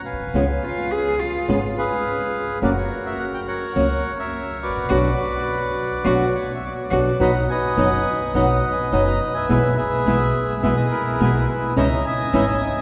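Bathed in a long, wet cathedral reverb, this passionate, dramatic tango moves with a rubato feel as a reedy, up-front bandoneon carries the melody over a woody, thumpy pizzicato upright bass and fingerpicked flamenco guitar, while an intimate bowed cello adds a sul tasto second line with light vibrato until 7.1 s, a band accent arrives at 4.9 s, and from 7.2 s a new section brings a second, airy bandoneon playing stabs in the background.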